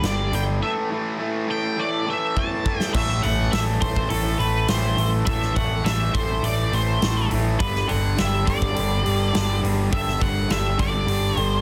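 A dark, fuzz-laden octave lead guitar plays a solo through the first 2.9 seconds of this brooding, cathartic alternative rock passage, its melody soaked in distortion and plate reverb, before a drum fill at 2.4 seconds pushes into the next section. A raw, double-tracked garage guitar riff sits up front with gritty overdrive, supported by a growly, amped electric bass and a natural big-room acoustic kit with bright cymbals and a punchy kick. Moving between G5 and A5 in A dorian at 103 BPM in a straight 4/4, the mix is dense and heavily limited under light reverb.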